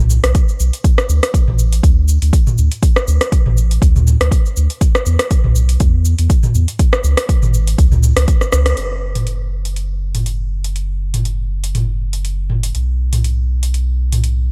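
A dry, up-front mix carries this earthy, driving afro house piece at 121 BPM in 4/4, with a light swing on the 16th notes. A round, sine-toned sub bass pumps under sidechain compression, while an overdriven afro-pop kit of cabasa, metallic hi-hats, rim click and toms, re-recorded in a small room, sits above a deep, layered, tape-toned electronic kick. The kick stops at 8.4 seconds as a drum fill and a band accent at 8.7 seconds lead into the next section.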